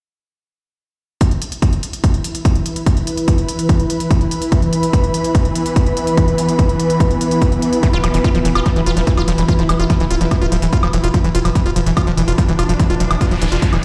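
This driving, intense psychedelic trance excerpt opens with a heavy, up-front electronic kick and smooth hi-hat and woodblock, joined by a swarming, detuned drone that holds sustained chords under a filter sweep and pumps against the kick. An ethereal, airy pad with ensemble chorus rises above it from 2.3 seconds, and at 7.8 seconds a squelchy, gritty acid bass riff with distortion and digital delay arrives alongside a tight, punchy sequencer bass. A brief noise sweep enters at 13.1 seconds, and the whole mix sounds as if played on a big sound system in a bare stone room.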